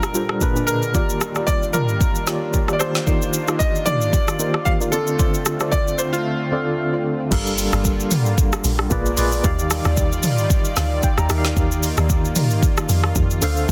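A dense, heavily limited modern master with a digital ambience frames this hypnotic, late-night amapiano excerpt, moving at 113 BPM in 4/4 with a light swing on the sixteenths. An up-front deep house drum kit, electronic and layered with a deep kick, woody snare softly clipped, dark hats, shaker, rim click, toms and crash, runs throughout, while a worn, slightly out-of-tune tine electric piano, lightly overdriven through a combo amp with fast tremolo, carries the accompaniment. A lush, nasal unison pad of detuned sawtooth holds sustained chords beneath, its chorus and sidechain pumping adding thick, bright motion, as harmonies move through Bb7b9, Ebmaj9, Cm11/Eb and Dm7. In the opening stretch a clear, natural grand piano sits up front with the melody through digital delay, joined by soft, round, wave-folded pluck stabs in the background until 7.0 seconds. At 7.3 seconds the drop arrives with a deep, round FM log drum bass, percussive and dark with a noise layer, over Gm7 and a return to Bb7b9 and Ebmaj9, and the electric piano slips in a fill around 10.5 seconds.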